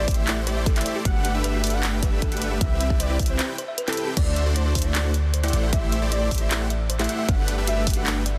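A punchy, layered electronic kick and a dubstep kit of handclaps, hi-hat and crash drive a half-time 4/4 pulse at 154 BPM, with a deep, boomy 808-style bass pumping underneath in this playful, euphoric future bass drop in G major. A huge, thick, detuned supersaw plays a compressed riff, while a velvety lead melody with portamento, chorus and digital delay and a round, tine-like FM pluck playing arpeggios through dub echo both sit in the background. A brief break arrives at 3.4 seconds before the drop returns at 4.2 seconds, moving through chords like Am7, Gmaj9, Cmaj7 and D9 in light digital ambience under a dense, heavily limited master.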